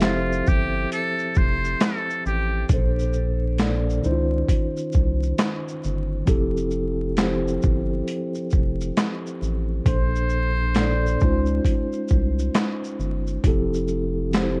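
A gritty, compressed boom bap sampler-style drum kit, with a thumpy kick, a high-tuned snare, handclaps, hi-hat and shaker, swings at 67 BPM in 4/4 beneath this mellow, nostalgic lo-fi hip hop excerpt in F major, where a round, deep analog bass anchors the low end and a clean, filtered tine electric piano heard through built-in speakers carries major-ninth chords while a breathy, buzzy trumpet with a metal mute slips in intimate jazz-style phrases at 0.0 and 9.9 seconds, all set in light reverb over a bed of vinyl crackle.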